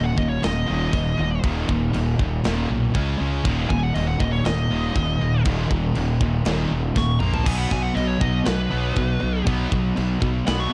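Aggressive and dark, this heavy metal excerpt is cut from a longer piece, with a dark, distorted lead guitar playing a solo through tape echo over three background riff guitars: one bright and scooped, one bright and heavy, and one overdriven and double-tracked. A growly, fuzz-laden fingered bass sits up front, while a tight acoustic drum kit with a medium-tuned snare and a rolled-off top enters at 0.2 seconds and drops in a fill at 7.0 seconds. The production is dry and shadowy, with little reverb.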